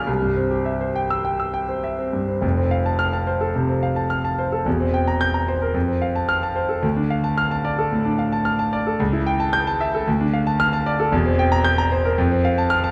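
The rhythm moves in a flexible rubato 4/4, with the pulse drifting between 99 and 116 BPM. This is a brief excerpt of a classical virtuoso piano study in F major, sparkling and brilliant in mood. A single concert grand piano carries the whole performance, reaching from E1 in the deep bass up to G6, and its tone is smooth with a vintage character and sits up front in the sound. After an opening passage on C, a new section begins at 2.4 seconds on F and travels through C7/E, F, Dm and A7/C#, returning to Dm before settling through C7/E back to F at 12.2 seconds. A wet recital hall reverb with a 1.5-second decay surrounds the instrument.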